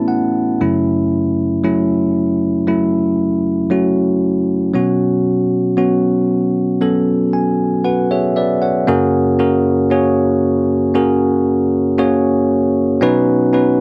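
A bell-like tine electric piano opens with a short fill and carries this heartbroken, emotional pop fragment alone, its bright, clean tone sitting up front over chords such as Aadd9, F#m7 and Bsus2. A second fill at 6.8 seconds leads into a new section at 8.9 seconds, where the harmony shifts to F#add9 and Badd9. The dry, close 1970s-style studio sound, touched with digital ambience, keeps the piano direct and intimate.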